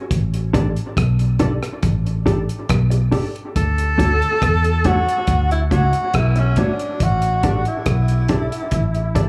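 Light reverb and small room ambience give this echo-heavy dub reggae piece a spacious, laid-back air at a straight 70 BPM in D major. A round, punchy, foam-muted fingered electric bass sits up front beside a dry, deep reggae drum kit with a tight kick, hi-hat and rim click, while a clean, compressed electric guitar enters at 0.5 seconds with vibrato, a high-pass filter and dub echo. At 3.6 seconds a breathy, whispered tenor saxophone takes the melody with scooped notes and its own dub echo, as the harmony moves from A7sus4 to Dmaj7 and back again.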